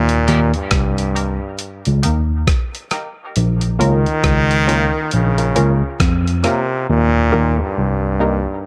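A brilliant, close-miked trombone carries the solo melody with light vibrato and dub echo over a deep, spacious dub reggae groove at 68 BPM, where a mellow, slightly out-of-tune tine electric piano plays a lightly overdriven bass line, a dusty sampler-style drum kit with a thumpy kick, hi-hat and rim click sits gritty and up front, and a nasal, detuned sawtooth chord stab with chorus and dub echo gets a filter sweep through the first 3.4 seconds as the harmony moves from Eb to Bbm and back, all set in a light digital ambience.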